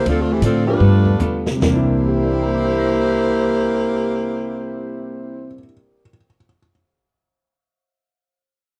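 A saxophone section carries the melody up front with vibrato and a soft attack in this joyful, swinging big band jazz excerpt at 134-174 BPM, backed by a growly, woody pizzicato upright bass, a dark, clean archtop guitar kept very quiet, an intimate upright piano in the background with audible action noise that plays on to 6.7 s, and a vintage drum kit with a punchy kick that plays a fill during an opening slowdown before dropping out at 1.8 s, as the chords move from Dm7 through G9 to C9 in a dry, close 1970s-style studio sound.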